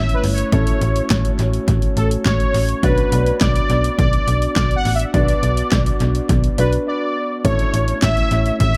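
An echo-heavy mix with a light reverb gives this short synth-pop excerpt a nocturnal, melancholic air, set in B minor at 104 BPM in a straight 4/4. A bold, fat analog synth brass carries the melody, its detuned sawtooth tone warbling with vibrato and chorus and trailing tape echo. Beneath it, a clear grand piano plays accompaniment in the background, intimate and natural with audible action noise, while a glass harmonica holds ethereal, glassy sustained chords. A snappy slap-like FM bass with a metallic attack sits low and prominent. A punchy, up-front house drum kit of kick, snare, hi-hat and handclaps comes in at 0.1 s, its hats tape-warmed, and the harmony moves from A to B minor and back to A, with a brief break from 6.9 to 7.4 s.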